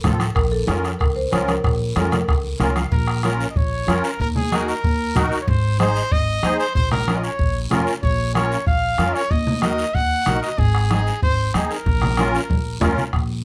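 The recording has a light reverb, with the bombo and congas carrying a vintage, band-limited character, as this driving, fiery cumbia bursts in partway through a longer piece. A woody marimba with rosewood bars states the melody in the opening moments, dressed in slapback echo and plate reverb. A reedy musette accordion, shimmering and up front, supplies the accompaniment throughout and slips in a short fill just before the trumpet arrives. Beneath them, a thumpy pizzicato upright bass with steel strings holds the low end, alongside a soft-beater bombo, damped congas played with soft hands, and a raspy, close guiro sitting low in the mix. At 2.9 seconds a bright, present trumpet takes over with a pop-style solo that runs nearly to the end, and a drum fill at 12.5 seconds rounds off the passage.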